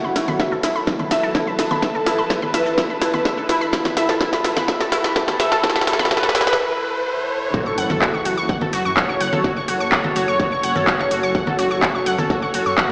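A straight 4/4 melodic techno groove, driven by a distorted, layered electronic kick and an up-front kit of congas, handclaps, metallic hi-hat, shaker and cracking snare drum, opens this dramatic passage as a build-up, with a drum fill and filter sweeps over punchy, bright unison pluck arpeggios, a brassy, round synth brass melody and two background pads, one deep and moody, the other airy and breathy, each pumping against the kick. A very quiet swarming drone drops out at 6.6 s, a faint riser and sub drop adds tension, and after a short break the drop lands at 7.5 s with an impact, and a rumbling detuned saw bass joins at 7.8 s. A huge ambient reverb and stone-room echo surround the mix, heard as if through a small, high-passed speaker.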